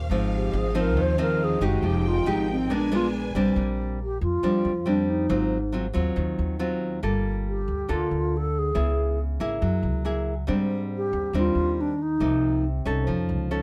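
This dry recording, cut from a longer bossa nova piece, has a romantic, sophisticated mood. A mellow, hollow alto flute carries the melody from 0.3 seconds with vibrato, a soft attack and rolled-off highs, sitting up front alongside a full-bodied, fingerpicked nylon-string guitar and a woody, pizzicato upright bass strung with steel. In the opening section the flute takes a solo line over a lush, bowed symphonic string section, which holds sustained, expressive chords with vibrato before falling away at 3.6 seconds. From there guitar, bass and flute continue through a longer second section of rich jazz harmony, moving through chords such as Bb69, Gm9, Gb9, Abmaj7#11 and a closing Faug7.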